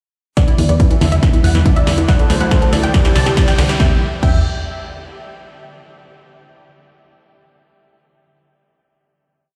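A driving, bittersweet uplifting trance piece in E minor at 140 BPM opens at 0.4 seconds with a build-up. An up-front four-on-the-floor electronic kick and a punchy analog drum machine play hats, a backbeat snare, toms and crash through a drum fill. Meanwhile a detuned unison pluck repeats a sixteenth-note riff over a pedal note, and a bright baby grand piano doubles it an octave higher in the background. A velvety synth lead with chorus and vibrato adds its own repeating riff, and a nasal analog pluck loops a six-step arpeggio alongside a very quiet, lush supersaw pad. A funky, wave-folded plucky bass joins with sidechain pumping at 0.6 seconds, and filter sweeps run on the pluck and piano. A faint riser enters at 1.4 seconds and carries through the Dadd9 and Cadd9 changes until the final Em7 chord at 3.8 seconds. Everything sounds dry and close, as if played through a big sound system in a bare stone room.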